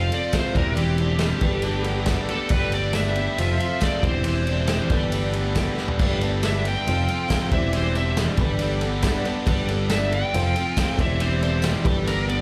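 Open-road and warm, this live folk rock and heartland rock passage features a smooth overdriven lead guitar soloing with slapback echo over a cycling F, Cadd9/E and Gadd9 progression. A shimmering, octave-doubled twelve-string acoustic and a biting, double-tracked overdriven riff guitar drive the accompaniment, while a punchy, up-front picked electric bass anchors the low end and a reedy musette accordion and a woody upright piano sit further back. A natural country drum kit with bright cymbals adds a fill at 5.8 seconds, a jingly tambourine lingers in the background, and the whole band comes through a club PA with light reverb.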